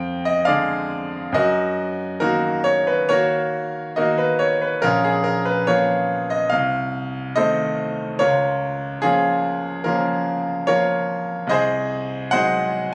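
Loose, uneven beats in 4/4 stretch and yield with expressive rubato as this bittersweet, passionate romantic character piece unfolds on a solo concert grand, heard here as a 12.9-second fragment of a longer work. The piano sounds brilliant and up front, with a deep bass and a smooth, vintage tone spanning Bb1 to G5, as diminished and minor chords drift toward a closing Ab7/C. Light reverb and a phone capture in the room add a touch of studio ambience around the instrument.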